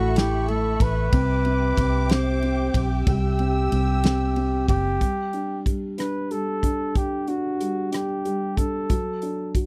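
Heartfelt and romantic, this brief six-eight pop ballad fragment sets a mellow flugelhorn melody over a felt-muted upright piano with a soft, boxy, intimate tone, while a dark string section adds lush, bowed sustained chords with sul tasto vibrato. A round, foam-muted electric bass and an airy, polished country drum kit sit up front, the kit coming in at 0.2 s with punchy kick, hi-hat, rim click, snare and ride; the strings and bass drop out at 5.0 s, leaving horn, piano and drums for the second part. The sound is dry and close, in the manner of a 1970s studio recording.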